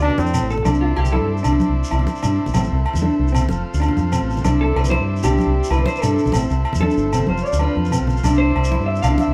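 Rolling in a straight 12/8 at 126 BPM counted in dotted quarters, this carefree, joyful highlife guitar band fragment in C major is driven by a round, punchy fingered electric bass up front, with ringing agogo bells and a grainy shekere, while bright, damped congas sit in the background. A warm trumpet with scooped notes and a breathy, whispered trombone sound only briefly, both falling silent by 0.5 s. Two slightly broken-up electric guitars carry the band: one compressed and fingered as accompaniment, the other darker, playing slapback-echoed arpeggios that pause and return at 4.6 s. A clean guitar solo runs from 0.7 s to the end, while a vintage, buzzy overdriven combo organ holds sustained chords alongside it. The changes cycle through F, Cadd9 and Am, and the whole band plays live together in one room with a moderate large studio reverb.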